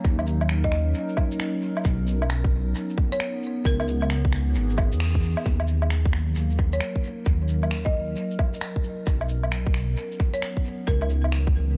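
Future garage at 133 BPM in Eb phrygian, wistful and ghostly, with a swung 16th feel, light reverb, an echo-heavy mix and a layer of vinyl crackle, cut from a longer piece and moving through Ebm7, Bmaj9 and Dbm9. A warbling, lo-fi tape-like pad holds sustained chords with chorus and sidechain pumping over a deep, rumbling detuned saw bass that also pumps, while an overdriven, tight electronic kick sits up front beside a quieter layer of shaker, woodblock and finger snaps trailing dub echo. A woody, bright marimba played with hard mallets adds a short melody from 0.6 to 3.9 seconds and returns at 6.7 seconds, its rustic tone carried on dub echo, with a band accent landing at 5.0 seconds.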